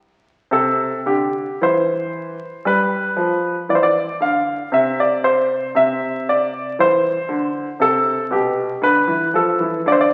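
A clear baby grand piano carries this solemn, introspective classical piece alone, sounding natural and up front with a short sustain as it plays from 0.5 to 10.1 seconds. Written in the manner of a baroque-style suite movement, it moves at a slow 58 BPM in 4/4 with a rubato feel, settled in C major. The piano ranges from B2 up to F5, passing through C, G7 and back to C before turning toward Dm near 8.8 seconds. A wet recital hall reverb surrounds the instrument, and the sound carries the crackle of a very old 78 rpm record, lending an aged patina. Cut from a longer work, this brief passage feels like a reflective, introspective thought.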